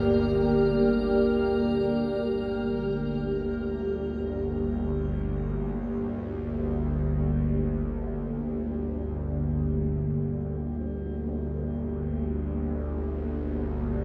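Dark and cavernous, this ambient passage in free time sits on a single G minor chord, heard as a fragment of a longer piece. A deep, moody analog pad holds sustained chords from Bb3 to D5, its full-bodied sawtooth tone thickened with chorus and a shimmer reverb. Beneath it, a tense, string-like drone in the low register from G1 to D2 sounds bowed, with vibrato and a phaser colouring its bright, detuned edge. Both of these parts sit up front and sustain through the full 14.0 seconds. At the opening, an icy, crystalline glass pad adds an airy Bb4 shimmer before ending at 2.4 seconds. A huge, wet reverb with a 7.9-second decay wraps the whole space, giving the sound a vast, echoing depth.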